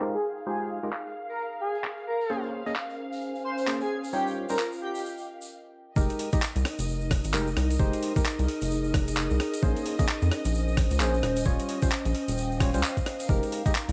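UK garage in a bouncy, soulful two-step vein at 131 BPM in F minor, this excerpt opens with a veiled, muted violin section holding sustained chords under a filter sweep, mellow chorused organ stabs with tape echo, a warbling nostalgic pad, a gritty pitched-up breakbeat kit of handclaps, hi-hat and rim click, and a grainy distant egg shaker, while an airy, dreamy lead carries the melody until 5.0 s, and after a brief break the drop at 6.0 s brings in a rubbery, hollow square bass and an overdriven, knocking kick up front, all colored by a lo-fi cassette sheen over Fm11, Bbm9 and Eb13 chords.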